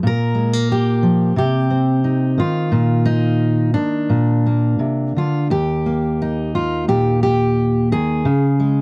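Rubato at 88 BPM in 4/4, this hopeful, gentle folk excerpt in Eb major features a solo fingerpicked steel-string dreadnought acoustic guitar, dark and full-bodied and placed up front in a dry, close 1970s-style studio sound with light reverb, moving from Bb5 through Cm, Bbsus4 and Bb before settling on Eb at 5.5 seconds and touching Db5 at 8.3 seconds.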